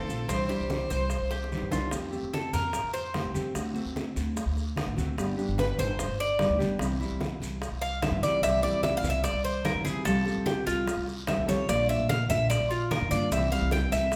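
A brief bowed violin line, airy and intimate, opens this relaxed excerpt of Cuban son and guajira in F major at 148 BPM. It plays over fingerpicked nylon-string guitar, a bright, metallic Cuban tres and a woody, thumpy pizzicato upright bass set up front, and soft-handed low congas, tight high bongos, raspy guiro and grainy maracas join almost at once. After a drum fill the violin has fallen silent, and the tres solos from 1.9 s to the end at 14.2 s over chords moving through Fadd9, D7, G, C and Bb, bathed in a large studio reverb.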